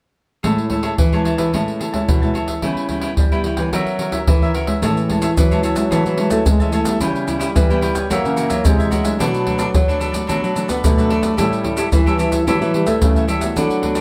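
Joyful and lively, this excerpt of samba and choro in A major moves at 110 BPM in a straight 4/4, with a tight, up-front surdo, pandeiro and maracas driving beneath a crisp picked cavaquinho and a small, dark fingerpicked nylon-string guitar comping through Amaj7, C#m7b5 and F#7. A second nylon-string guitar sits in the background on the bass line, classical in flavour with audible finger squeak. At 4.8 s a warm, punchy, close-miked trombone enters with a forceful, jazz-style solo of scooped notes over changes that add Bm7 and A7, all set in a studio reverb heard from further back in the room.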